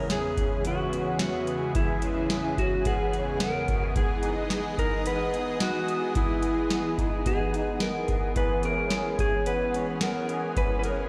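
A clean lap steel guitar carries a sliding melody with delay over a thick, detuned, slow-attack pad with chorus, twangy slightly broken-up lo-fi guitar arpeggios with chorus and delay, and a booming analog drum machine with a deep kick, crisp snare and metallic hats up front, in this dreamy, ethereal dream pop piece at 109 BPM that moves from C#m7/E to Emaj7 and back in a recital-hall reverb.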